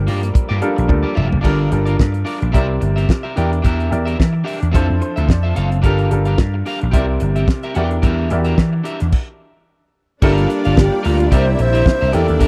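A clear, worn grand piano, a very quiet, mellow French horn section and a round, punchy vintage slap bass open this driving, danceable, swung disco cut, joined at once by a slightly broken-up picked electric guitar with spring reverb and a damped 70s drum kit with a fat snare and tight kick; after a stop at 9.1 seconds the horns return beside a lush, bowed string section, and an airy, expressive alto flute takes the melody at 10.8 seconds, captured in a dry, close 1970s-style studio sound.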